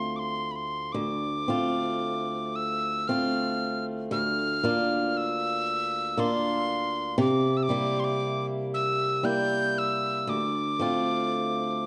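In a loose, rubato triple metre with uneven beats, this haunting, longing Celtic slow air, cut from a longer piece, sets a breathy tin whistle melody with a straight tone and crisp, chiffy attack over boxy, picked swing-style acoustic guitar accompaniment moving through Dm7, Bb/D and C7 before returning to Dm7, with both parts up front from 0.0 to 11.9 seconds in a dark production bathed in moderate recital hall reverb.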